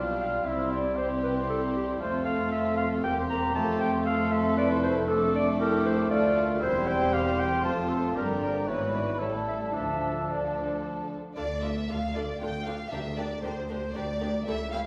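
Urgent and dramatic, this quick classical-period orchestral movement in 3/4 at 116 BPM moves with a rubato feel and settles into D minor from 5.1 s, as a rich, focused chamber violin section carries the melody over an up-front clear clarinet, an airy flute ensemble, a sul tasto violin section, a cor anglais, a very quiet distant viola section, a roomy bassoon, mellow French horn chords, and bowed cellos and double basses, with the winds and horns dropping out near 11.1 s and very quiet hard-mallet timpani entering at 12.9 s, all heard from further back in a wet recital hall.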